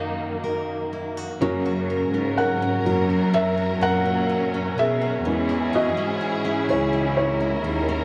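A felt-muted upright piano opens this melancholic, emotional pop ballad excerpt, sitting mellow and intimate up front over lush, distant studio strings with expressive vibrato and portamento, while a full-bodied picked steel-string guitar arpeggiates through a tape echo. At 1.4 seconds the piano moves into a solo as a bowed cello section enters on the bass with a soft-attack, floating sul tasto tone, and a dark, roomy French horn section adds a second line in the background. The harmony moves from D#m/F# to F# and then to C#m at 5.3 seconds, all in a small room with light reverb.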